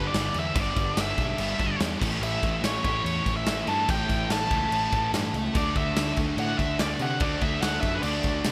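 A huge arena drum kit sits up front in this aggressive, menacing hard rock excerpt, its punchy kick, medium-tuned snare and crash cymbal bathed in gated reverb from 0.1 s. Over a G, A and D progression, a smooth overdriven lead guitar carries the melody, while a growly fuzz bass and three riffing guitars drive underneath: a double-tracked high-gain part, a hollow-body guitar lush with chorus, and a very quiet, sludgy, dark one. The sound has a bright 1980s-style digital production with a moderate plate reverb.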